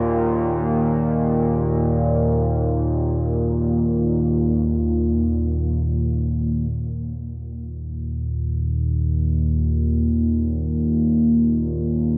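Worn, warbling cassette tape gives this recording a drifting, unsteady pitch, and a huge, wet reverb with an 8.7-second decay surrounds it in a vast, dim space. The fragment, cut from a longer ambient piece, unfolds in free time with a dark, ominous mood, tuned to A4 = 438 Hz. A single analog drone carries the piece alone from 0.0 to 12.2 seconds, sitting up front in the low register between Eb2 and Bb2 over an Eb5 chord. Its sawtooth and pulse-wave tones, shaped by pulse-width modulation, slow attacks, sustained notes and long releases, give it a warm, evolving quality. Chorus, phaser and a diffuse ambient delay thicken and blur the drone, and a second section begins at 6.7 seconds.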